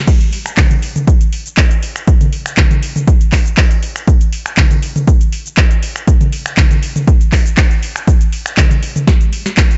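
House at 120 BPM in 4/4, with a light 16th-note swing, this hypnotic, gritty drop runs the full length of the cut from a longer track. A punchy analog kick sits up front, re-recorded in a small room. Under it, a booming, tape-warm drum machine re-recorded in a large room supplies a crisp snare, metallic hi-hats, shaker, handclaps, finger snaps, toms and a crash cymbal, all in a dry mix whose top end is rolled off above 7.9 kHz.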